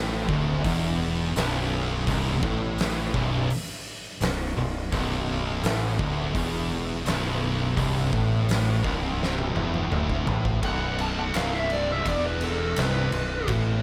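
Brooding and sludgy, this stoner and doom metal passage, cut from a longer piece, stacks a brilliant, overdriven, double-tracked sludgy guitar and two thick fuzz guitars, one dark and very quiet and one warm in the background, over a growling, overdriven fingered bass and an up-front, oversized low-tuned drum kit with a boomy kick, fat snare and gritty, saturated room sound, until a drum fill at 9.2 seconds hands over to a compressed fuzz lead guitar solo with delay that enters at 10.7 seconds as the chords drop away, all set in light reverb.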